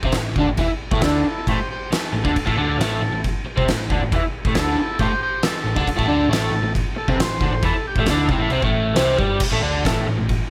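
A crunchy, double-tracked overdriven guitar drives this raw, rowdy garage rock excerpt at 136 BPM in straight 4/4, its up-front phaser-treated riff opening on an A5 chord over a round, dark hollow-body bass and an oversized, low-tuned kit with a fat snare, punchy kick and dim cymbals in a pumping, gritty stone room. A buzzy vintage combo organ, overdriven and phased, carries the melody from 1.0 to 8.5 seconds, sitting lower in the mix under light reverb before the music shifts into a new section at 9.4 seconds.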